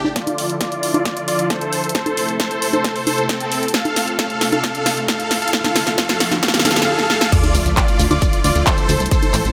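A background swell opens this driving, bittersweet uplifting trance excerpt as huge, up-front supersaw chords carry the melody through cassette-tape colour, delay and a filter sweep across the build-up, joined by a thick, chorused unison pad, a punchy electronic kick and a big-room kit of layered snare, handclaps, hi-hats, congas and crash in studio reverb, with riser and sub drop effects underneath, until the drop at 7.3 seconds brings back a very quiet high unison pluck and a grainy, close shekere, followed at 7.5 seconds by the return of a funky, detuned sawtooth bass, while the chords, pad, bass and drums pump to the sidechain.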